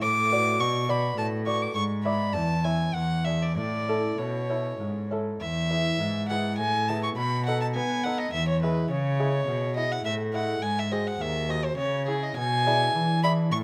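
A rich, reedy gut-string violin sings the melody over a mellow, delicately fingerpicked double-strung lute and a warm, nasal bowed cello bass in this flowing, serene baroque-style sonata movement with continuo, taken from a longer piece, moving in a rubato 3/4 at 104 BPM in period style with light reverb as it turns from A major to E major at 5.4 s.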